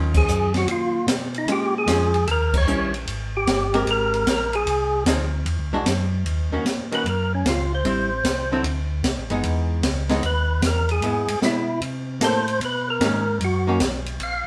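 A late-night, soulful soul jazz organ trio opens on a dark, clean hollow-body archtop guitar accompanying over a mellow, round tonewheel organ bass with key click and a slow rotary speaker, as an up-front acoustic drum kit with a high-tuned snare and boomy kick joins for shared band accents, while a fat, lightly overdriven percussive tonewheel organ with vibrato carries the swung melody and takes a solo from 6.3 seconds, the band playing live together in moderate studio reverb.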